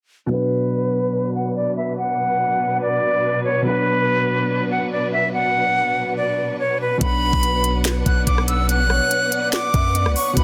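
Brooding and melancholic, this half-time trap excerpt in B minor at 143 BPM opens with an airy, vibrato-laden silver flute melody carrying a digital delay over a dark, boxy grand piano and lush bowed strings, all filtered beneath a sweep until 7.0 seconds, when a knocking trap kit with crisp hats, finger snaps, rim clicks and a sharp, softly clipped snare arrives alongside a deep, decaying 808 bass and a detuned, gliding sawtooth lead with chorus tucked in the background, set in light small-room reverb with a dense, heavily limited master.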